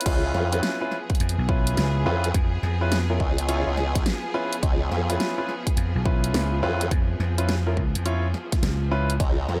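This excerpt from a longer glitch hop track opens straight into a drop at 105 BPM in 4/4, with a swung sixteenth-note feel and a funky, swaggering mood built over a C#7#9 chord. A clear, natural grand piano plays stabs with sidechain pumping and delay, while an electronic dubstep drum kit with a huge snare supplies crash cymbal and hi-hat. A punchy, up-front electronic kick drum and a sustained formant-sweep wobble bass arrive almost immediately, the bass a saturated, chorused pulse-and-sine tone that wobbles up front in the mix. Behind them, a bright, lush studio string section holds bowed chords with intense vibrato and sidechain pumping. At 1.2 seconds a growly, amped vintage slap bass joins up front, adding a bright, punchy electric edge. The drums carry the feel of a small room, and the whole passage sits in a digital ambience.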